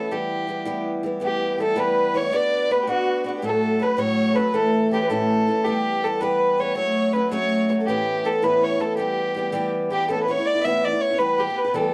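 A smooth, lightly vibrato-tinged fiddle carries the melody up front in this driving, spirited Celtic jig in E dorian, moving at 108 BPM in 6/8, with a boxy, picked ladder-braced acoustic guitar accompanying from the start over chords centred on Em, Bm and A. At 1.2 s a second fiddle joins in the background with a biting, airy-bowed, earthy line. A new section arrives at 10.1 s, all set in a dry, close 1970s-style studio sound with light reverb, cut from a longer piece.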